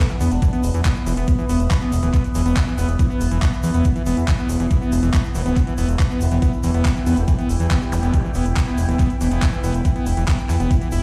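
A fat, nasal analog bass with tube saturation sits up front beside a knocking, tape-warm kick, driving this hypnotic psychedelic trance excerpt at 140 BPM in E minor on a steady E5 chord. A squelchy, distorted acid bass riff with dub echo pumps against the sidechain, and a garage kit adds metallic hi-hats and handclaps, while a grainy egg shaker, a deep, moody ambient pad and an overtone-sweeping drone with phaser and chorus fill the background. A very quiet formant-sweep wobble bass returns from 5.4 to 8.2 seconds, a brief zap flickers at 7.9 seconds, and the mix sounds as if played on a big sound system in a bare stone room.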